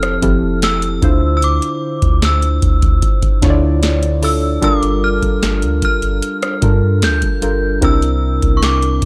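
Smooth and romantic, this contemporary R&B excerpt at 75 BPM in straight 4/4 drifts through Fmaj9, Dm9, Gm9 and C9, with a mellow, warbling FM synth chime carrying the high melody through an ensemble chorus, muted, felt-like detuned synth keys with a filter sweep and chorus sitting intimately up front, a soft, round sine 808-style bass underneath, and a booming analog drum machine with a deep kick, crisp snare, metallic hats and rim clicks re-recorded in a large room, all in a dry, gritty hardware recording touched with digital ambience.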